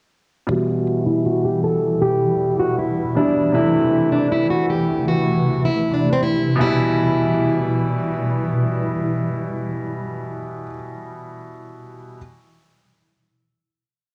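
A dark, boxy plugged-in steel-string acoustic guitar sits up front from 0.5 seconds, picking a looping parlour-style melody that repeats like a sampled loop, colored by a low-pass filter, cassette tape and tape echo. This brooding, hard-hitting trap piece in E minor moves at 157 BPM with a half-time feel, its breakdown moving from Em to Am under a filter sweep before settling on a final Em chord at 6.6 seconds. A bright grand piano, brilliant and intimate with audible action noise and long sustain, holds open-voiced chords up front, also repeating like a sampled loop and running until 12.2 seconds. Entering at 1.6 seconds, a granular cloud pad spreads blurred, evolving, mellow sustained chords with a slow attack, long release and its own reverb. A moderate spring reverb and the character of a home cassette recording give the whole piece a worn, lo-fi intimacy.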